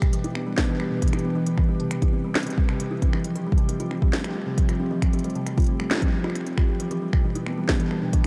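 IDM at 135 BPM in F lydian, this glitchy, intricate excerpt moves through Em7, Cmaj7 and Fadd9 across about 8.3 seconds. A glassy, ethereal FM pad with ensemble chorus holds slow-attack sustained chords beneath a mellow, woody kalimba playing arpeggios through digital delay. A deep electronic kick sits up front, while a smooth-hatted kit of finger snaps, hi-hat and snare with delay fills in behind, all set in a dark production with huge ambient reverb.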